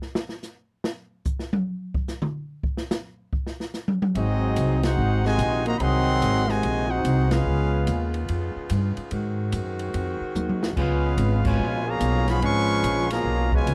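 A dry, close 1970s-style studio sound frames this joyful, brassy big band swing fragment at 145 BPM, opening with a drum solo on an open kit with dark cymbals, a boomy kick and a medium-tuned snare. At 4.2 seconds the band arrives in Ab major over Ab7 and Db7 harmony: a punchy, vibrato-laden trumpet section carries the melody up front, a clear trombone section plays a second line, and a very quiet, distant saxophone section holds sustained chords with light vibrato. A woody pizzicato upright bass anchors the low end, band accents punctuate the phrases, and a brief drum fill at 10.4 seconds leads the brass back in.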